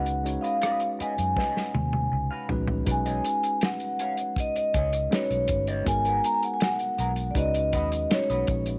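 A mellow, ringing vibraphone carries the melody from the start, backed by a worn, slightly out-of-tune tine electric piano, a bright, twangy electric guitar riff with wah through a small old amp, and a dark, round, foam-muted fingered bass, all at a smooth 80 BPM in lush 1970s-style soul. A dry, muffled soul drum kit with a tight kick and rim clicks sits up front, playing a fill from 1.4 to 2.9 seconds before the harmony moves through B69 and G#m9 back to C#9sus4. Light reverb and small room ambience frame this silky fragment of a longer piece.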